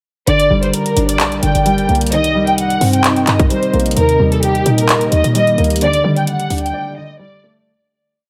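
Melancholic and menacing, this short hip hop and trap piece in G minor moves at 130 BPM with a half-time feel, built on one hook that begins at 0.3 seconds. Up front, a lush symphonic violin section bowed with vibrato carries a looping melody, repeated like a sampled loop and softened by a low-pass filter. Beneath it, a dark, boxy concert grand piano plays a rising eighth-note arpeggio, also filtered and looped, while a glassy FM pad enters at 0.8 seconds to hold ethereal sustained chords in the background through ensemble chorus, built-in reverb and phaser. A punchy 808-style bass with a sine tone and noise layer supplies long sub-bass notes with pitch slides, and a trap kit with a hard-clipped kick, metallic hats in sixteenths with fast rolls, and handclaps drives a bouncy beat. The harmony moves through Gm, Cm7, Eb and Dsus4 under light digital reverb, and the track fades out over its closing seconds, with bass and drums dropping away at 6.7 seconds for a brief break.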